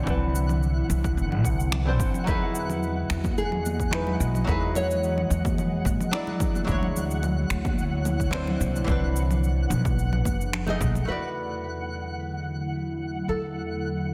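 Smooth and relaxed, this sunset chillout excerpt sets a woody, thumpy pizzicato upright bass up front beneath a dark, clean hollow-body archtop guitar with tape echo, an ethereal detuned pad that gets a filter sweep from 11.1 s, a twinkling granular shimmer, overdriven electronic kick, congas, shaker and finger snaps, ringing acoustic congas in the background, and a small, fingerpicked nylon-string guitar melody that appears at 2.3 s and returns at 11.1 s, all in a dense, heavily limited mix with moderate stage reverb.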